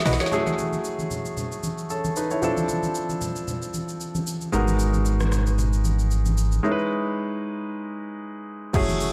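A short drum fill on a soft, tape-echoed R&B kit opens this hypnotic, deep amapiano excerpt alongside an intimate, up-front concert grand piano playing minor ninth chords with audible action noise, while a woody, punchy log drum bass appears briefly at the start and again at 8.7 s, distant low-tuned congas with tape echo enter at 0.3 s, and a full, mellow sine sub bass with octave holds a single note just before the break at 6.6 s, in an echo-heavy mix with light reverb.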